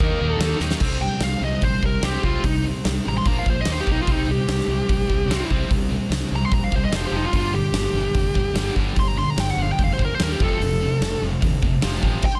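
Heavy and driving, this hard rock passage in straight 4/4 is cut from a longer piece and runs about 12 seconds. A big arena drum kit sits up front with a fat snare, punchy kick, crash cymbal and hi-hat, its sound polished and airy with a hall quality, and it plays a fill at 0.6 seconds. From 0.8 seconds a bluesy, overdriven lead guitar takes a solo, dark and distorted with digital delay, picked and placed up front over the band. Behind it, a high-gain distorted guitar and a sludgy overdriven guitar both play a riff in the background, each bright and picked. A fuzz-laden fingered electric bass anchors the low end with a growly, overdriven tone. Light reverb and small room ambience frame the whole mix, while the chords move through Eb, C, Bb, F and G.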